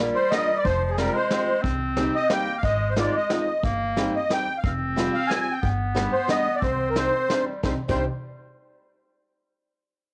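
A reedy, shimmering musette accordion carries the melody up front in this nostalgic, bittersweet musette waltz in 3/4, a short cut from a longer piece. Beneath it, a bright clarinet plays a second line in a classical style, while a fingerpicked steel-string acoustic guitar supplies the accompaniment. A woody, thumpy upright bass played pizzicato anchors the low end, and a vintage brush drum kit enters at 0.3 seconds with dark cymbals, a punchy kick and a rolled-off top. The harmony moves through minor and suspended colours, settling on Cmadd9 near the close. The accordion, clarinet, guitar and drums carry the soft grain of cassette tape, all set in a small room with light reverb that gives the home recording an intimate, dusty feel.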